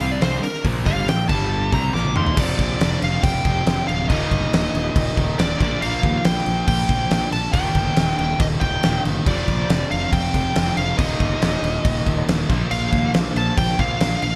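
A driving, straight 4/4 hard rock groove opens this heavy, menacing excerpt, anchored by a big, up-front acoustic drum kit with a fat snare, punchy kick and dark, rolled-off cymbals that rolls through a fill between 1.9 and 2.4 seconds. Beneath it, a fuzzy, round fingered bass sits with two overdriven semi-hollow guitars and a bright, double-tracked distorted guitar, all three playing a quiet riff tucked into the mix. On top, a smooth, overdriven lead guitar with digital delay carries the melody from the very start, soloing in the opening moments before settling into the main section under bright 1980s-style digital production and light reverb.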